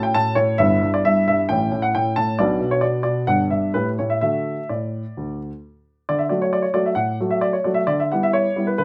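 A warm baby grand piano carries this graceful, elegant classical-period sonatina on its own, sounding present and up front across a span from G1 to A5. The piece sits in D major and 4/4 at 133 BPM, but the playing is shaped with rubato, giving the phrases a flexible, breathing quality. The harmony moves through F#m/A, Em/G, A and Bm before an Em7/G and an A9 lead to a settling D chord at 4.2 seconds. A second section begins at 6.1 seconds, and an Em7/D colours the final moments before this fragment of a longer work breaks off at 8.8 seconds. Light reverb lends the solo instrument a gentle sense of space, and the instrument is tuned to A4 = 442 Hz.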